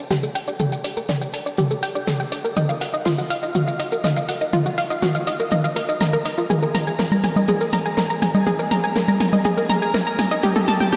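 A round, bright analog pluck with a sub octave, chorus and delay spins hypnotic arpeggios between F4 and Bb5 through a filter sweep in this dark melodic techno build-up at 122 BPM, driven by an up-front, tape-warm analog drum machine of congas, hi-hat, shaker and toms captured in a large room, with a very quiet, dry funk kit adding high-tuned snare and hi-hat, a drum fill running across the 11-second cut, and the mix soaked in a dreamy, long ambient reverb.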